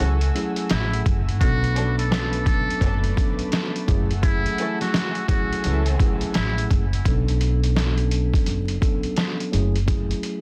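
Gritty, tough boom-bap hip-hop with a swung feel, cut from a longer piece: a buzzy, close-miked muted trumpet sings a jazz-style solo with scooped notes until 6.7 seconds over a mellow tine electric piano, a detuned sawtooth pad and veiled con sordino string stabs in the background, while a woody pizzicato upright bass and a thumpy, pitched-down, sampler-style drum kit sit up front until around 10 seconds, all under vinyl crackle and a dense, heavily limited master.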